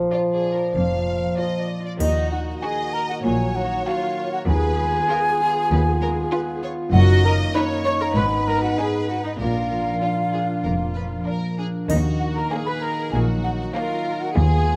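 Recorded up close on a scoring stage with a moderate reverb tail, this excerpt from a longer cinematic film cue has a playful, mischievous and whimsical character in a straight 4/4. A distant, roomy bassoon sits up front for a brief opening figure, while a bright, ringing concert harp spreads fingerpicked arpeggios across its range from the first moment. The string sections enter almost at once: a smooth violin section carries the melody in the background, a focused second violin section with a smooth top adds its own line, violas fill in the accompaniment with vibrato, and lush cellos and double basses take up the bass from 0.8 seconds. At 2.0 seconds the cue moves into its second section, where a pure, hollow silver flute plays a second line above mellow French horns holding sustained chords, and a triangle adds a small sparkle. The triangle returns briefly near the close as the harmony comes back to the E-flat minor chord that opened the second section.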